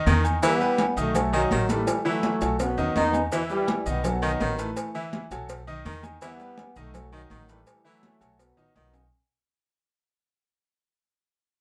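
A bright grand piano and a woody, dark upright bass open this fiery, danceable salsa cut at 166 BPM, moving through Em and B7 with a brief Asus2 near the end, all under a fade-out. A mellow, punchy trombone section carries the tune up front from 0.4 seconds with light vibrato, while a bright baritone saxophone adds a vibrato-laden second line. Thin-skinned, high-tuned congas, a tight cowbell, grainy maracas and ringing metal-shell timbales with agogo bells drive the groove, with drum fills at 1.9 and 8.6 seconds, all in a moderate studio reverb.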